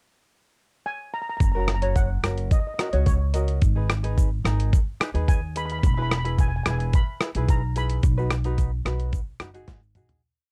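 A straight, sunny calypso groove in 4/4 settles in at 1.4 s, after a short pickup bar in which the steel pan plays alone from 0.9 s. That lead pan, struck with soft rubber sticks, sounds metallic and shimmering yet mellow, and it repeats short hook phrases. Up front, a compressed, sampler-style drum kit with a tape-warm, gritty edge drives the festive beat with a thumpy kick, medium-tuned snare, rim clicks, hi-hat and toms. A woody, pizzicato upright bass with steel strings adds a syncopated figure colored by transformer saturation, while a light, fingerpicked tenor ukulele plays triad chords through F#, G#madd9, E and B, and a grainy, bright egg shaker sits in the background. The dry hardware recording carries little reverb, and the whole piece fades from 8.0 s as a drum fill closes it out.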